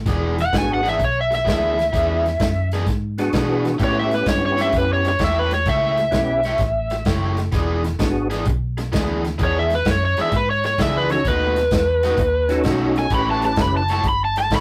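Electric blues shuffle with a soulful, swaggering swing, taken from a longer piece, where an overdriven slide guitar played with fingerpicks sits up front and carries a bright lead from 0.4 s to the end over an E7, A7 and B7 progression. Beneath it, a picked hollow-body guitar lays down an overdriven riff, a foam-muted fingered bass supplies a dark, round bottom, and an airy, polished big-band drum kit swings with a medium-tuned snare and punchy kick. A fat tonewheel organ with key click, percussion, chorus vibrato and a slow rotary speaker fills in the accompaniment, dropping out at 8.3 s and returning at 11.1 s, all within a rough, warmly saturated rehearsal-room sound with moderate booth ambience.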